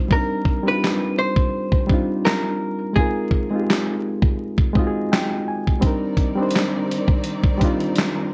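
A gritty, sampler-style soul drum kit sits up front in this reflective, nostalgic lo-fi hip hop excerpt, its thumpy kick, fat snare, hi-hat and handclaps compressed and re-recorded in a large room, with a lazy swing on the sixteenths. A reedy, worn electric piano carries the accompaniment through its built-in speakers, sounding slightly out of tune, and takes a short fill at 4.4 seconds. Alongside it, a dark, picked hollow-body jazz guitar plays a compact melody in a clean, compressed tone until 5.4 seconds. At 5.8 seconds a lush studio string section enters with sustained, bowed chords, woody and smooth-topped with gentle vibrato, as the harmony returns to Cm9 after a turn to Bb9sus4. Light reverb and a steady layer of vinyl crackle give the whole fragment a dusty, faded character.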